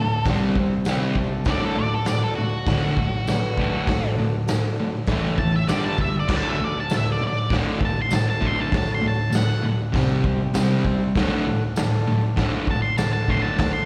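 Rowdy and swaggering, this garage rock excerpt from a live gig rolls along at a straight 99 BPM in 4/4 in D major, with a punchy, up-front acoustic kit and a double-tracked, compressed fuzz guitar riff driving underneath a dark, distorted octave-fuzz lead guitar solo that runs the whole 13.9 seconds with tape echo. A reedy vintage combo organ holds sustained chords in the background, adding a fill between 0.3 and 1.5 seconds, while a jingly tambourine sits distant in a large room. Heard through the venue's PA, the sound carries recital hall reverb, a bright stone-room character on the drums, and slapback echo on the riff guitar.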